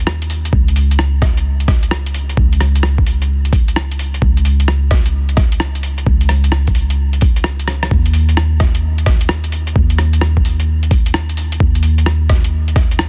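A deep, round, sidechain-pumped soft 808-style bass sits up front in this ghostly, nocturnal future garage excerpt, joined by a muffled, thumpy, overdriven electronic kick drum and a pitched-down, lo-fi sampler-style kit of swung hi-hat and rim click with soft clipping on the snare, with a drum fill at 7.7 seconds, all in a dry, dense, heavily limited mix dusted with vinyl crackle.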